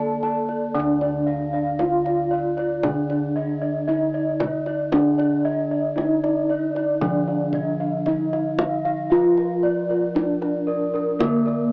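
Heard through a home cassette with an AM-radio tinge and the short, moderate ambience of a small booth, this Javanese gamelan fragment is cut from a longer piece and has a hypnotic, shimmering mood at an unhurried pace in 4/4. The melody rings from a bronze metallophone struck with padded disc mallets, mellow and soft, its paired tuning producing airy, shimmering beats. Beneath it, a lower metallophone carries the accompaniment with a wooden mallet, sounding close, dry and full. Two upper layers spin arpeggios in the same high register: a set of bossed gongs played with padded beaters, and a mid-forward metallophone whose paired tuning also sets off beating shimmer. Deeper bossed gongs supply a round, beating bass, while the kendang adds tight acoustic percussion from 0.2 s until 11.6 s. The cassette coloring sits on the metallophones and the arpeggio gongs, leaving the bass gongs untouched by it, their tone round and airy.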